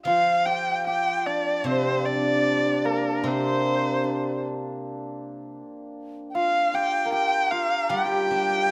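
A silvery, ringing steel-string zither played with fingerpicks opens this graceful, tender passage of Chinese traditional chamber music, cut from a longer piece. From 0.1 seconds a single warm erhu carries the melody up front, bowed with expressive vibrato and portamento, while a bright, shimmering hammered dulcimer stands forward with a second line and a very quiet large bamboo dizi adds another, pure in tone with a buzzing membrane and crisp attack. The ensemble moves at 76 BPM in 4/4 with a straight feel in G yu mode, captured by close, detailed microphones in light reverb.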